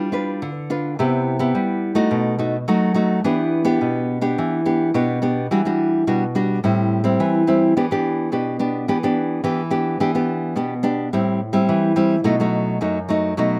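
A solo nylon-string guitar opens this short cut from a longer samba, fingerpicked in a classical style and sitting up front with a warm, acoustic tone. At a lively 106 BPM in E minor, it moves from G7 and Cmaj7 through B7 to Em7, then shifts at 5.5 seconds into a yearning passage built on Em9 and Am7 before closing on B7. Recorded outdoors, the sound is dry, with little reverb around the strings.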